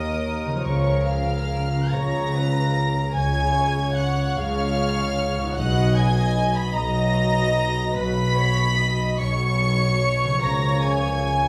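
Heard from further back in a stone room with a wet reverb, the strings carry a gentle halo. This sorrowful, bittersweet cinematic passage is cut from a longer piece and moves rubato in 6/8 at 49 BPM, counted in dotted quarters. High violins carry the melody sul tasto with light vibrato and a soft, intimate attack. Beneath them, a second violin line floats in a pure tone, and violas add bowed accompaniment. Dark cellos and double basses hold the low end, with the basses sitting up front and showing a smooth top. From 0.4 s a concert harp rings in the background with fingerpicked arpeggios, as the harmony moves from Eb7(no3) through Db6 and Badd9 before returning to Db6.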